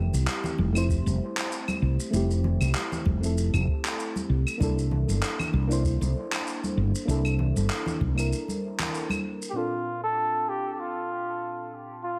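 A round, vintage FM electric piano with chorus and dub echo opens this relaxed sunset chillout piece at 97 BPM in F major, alongside an up-front, growly and hollow-toned fretless bass, gritty sampled shaker, handclaps and claves, and ringing congas played with soft hands in the background. A deep, dry electronic kick joins at 0.9 s, all on a lightly swung 16th-note feel moving from Fmaj9 to C13. The bass drops out for a break at 8.3 s, and at 9.5 s a warm, jazz-style flugelhorn with scooped notes and dub echo takes an up-front solo over a Bbmaj7 chord, backed only by the piano. The echo-heavy mix adds light reverb and a digital ambience.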